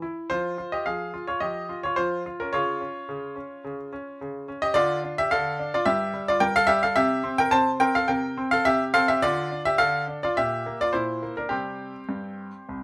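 A clear grand piano plays alone through this serious, dramatic classical-period sonatina excerpt, moving at 107 BPM in a straight 4/4 and ranging from C2 up to A5. Its polished, intimate tone sits up front with short sustain and audible action noise, touched by light reverb. The harmony passes from Fm through Db and Dm, reaches an unharmonized moment at 5.9 seconds, then turns through C5, Dm and Gm/Bb before settling back on C5.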